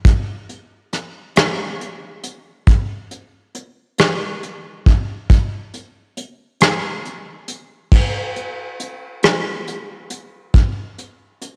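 Aching and melancholic, this short pop excerpt moves at a slow 46 BPM in a straight 6/8, carried entirely by a soft brush drum kit that plays from 0.0 to 11.6 s. The kit sits up front with a dark, smooth sound, its dusky cymbals, tight kick, hi-hat and rim clicks softened by a rolled-off top and the warm character of cassette tape. A lush hall reverb surrounds the home recording, and the music shifts into a new section at 7.9 s.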